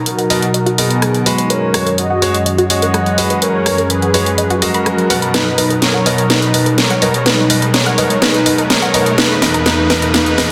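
An airy, breathy pad and a tight, detuned sequenced arpeggio open this hopeful, euphoric progressive house build-up, quickly joined by a smooth, full-bodied supersaw melody under a low-pass filter, an up-front house kit with a cracking snare and rim click, and brilliant baby grand piano stabs with audible action noise. Filter sweeps run across both the arpeggio and the supersaw, a very quiet riser enters at 1.8 seconds, and a drum fill begins at 5.3 seconds as the harmony moves from Bmaj7 through F#sus2, back to Bmaj7 and on to E. Tape echo touches the arpeggio, supersaw and piano, all within a wet concert-hall reverb and a dense, heavily limited modern master.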